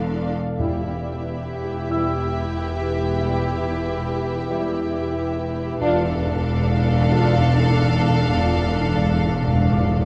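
An ominous, uneasy cinematic excerpt in E phrygian at 92 BPM opens on a lush, softly bowed violin melody over a focused second violin line, smooth violas, a background cello bass and a close, expressive double bass, along with a ringing thumb-plucked harp and, in the background, a warbling, lo-fi detuned tape-like pad with chorus, before mellow French horns enter at 0.6 s and round, soft-mallet timpani sound at 0.6 s and return with a fill from 5.8 s, all in a dark production on a reverberant scoring stage.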